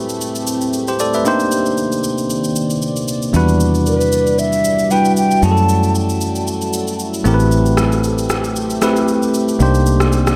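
A swung amapiano groove at 115 BPM in 4/4 rides on an electronic shaker and rim click that sound re-recorded in a large room, with a punchy, foam-muted fingered electric bass arriving at 3.3 seconds. A bell-like, up-front tine electric piano and a dark, detuned sawtooth pad with chorus and slow-attack sustain carry chords from Am9 through Cm9, Em9 and F#m7, setting a deep, soulful mood under light reverb. From 3.9 to 6.0 seconds an airy, hollow concert flute sings a brief vibrato melody through tape echo in this short cut from a longer piece.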